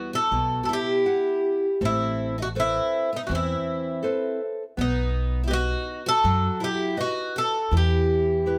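Picked Irish bouzouki carries a longing, mournful melody up front from the opening, its metallic double strings set over a shimmering, octave-doubled twelve-string acoustic guitar second line and a fingerpicked classical nylon-string accompaniment with audible finger squeak. This fado-style ballad in E harmonic minor moves at a rubato 81 BPM in 4/4, with a woody, dark upright bass entering at 0.3 seconds, its thumpy pizzicato on gut strings also sitting close. The chords move from Emadd9 through Amadd9 and B back to Em, and the band plays live in one room under light reverb in this short cut from a longer piece.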